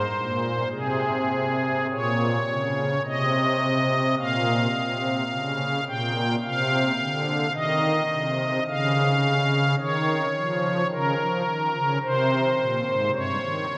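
The pulse moves slowly and freely at about 54 BPM in 4/4, stretching and relaxing with a rubato feel. This is a classical, chorale-style piece for solo pipe organ, cut from a longer work, and its mood is solemn and dark. The organ plays on soft string stops with a celeste, giving a shimmering tone and a romantic voicing that spans from G2 to G5 and sits up front in the sound. The harmony opens on Abadd9, passes through Bbm, Cmadd11, Dbadd9 and Bbm/Db, and reaches Eb/G at 13.1 seconds. A cathedral reverb with a long 6.6-second decay surrounds the instrument, and the recording carries the spacious feel of a church or concert hall.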